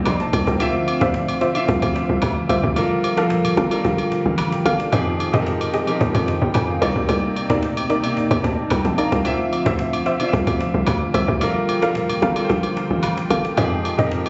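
A straight 4/4 amapiano groove at 111 BPM opens with a brief cajon fill, and the snappy, hard-handed cajon then sits back beneath compressed, saturated agogo bells and woodblock while a tight, punchy log drum bass drives up front. A warm, open baby grand piano rings with long sustain over hollow, airy pad chords shimmering with ensemble chorus and tremolo, and from 1.0 s a round, gentle pluck adds dark stabs through chorus and digital delay, with the piano taking a short fill at 8.2 s. The mood is hypnotic and deep in D phrygian, cycling through Cm9, Dm9, Gm9 and Fm9, and the phone-captured room sound feels compressed and dull at the top, with light reverb and small-room ambience.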